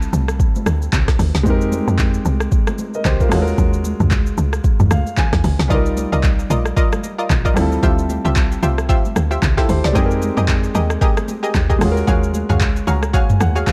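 Hypnotic and deep, this amapiano cut at 113 BPM swings its 16ths over minor eleventh chords, with a present, polished grand piano comping and adding fills at 4.6 and 12.6 seconds, a tight, punchy FM log drum bass with a noise layer, an up-front electronic kit of deep kick, woody snare, metallic hats, handclaps, rim click, shaker and toms, faint ringing high-tuned congas, and a round, detuned sawtooth pluck with chorus and digital delay entering at 5.7 seconds, all set in a dark digital ambience.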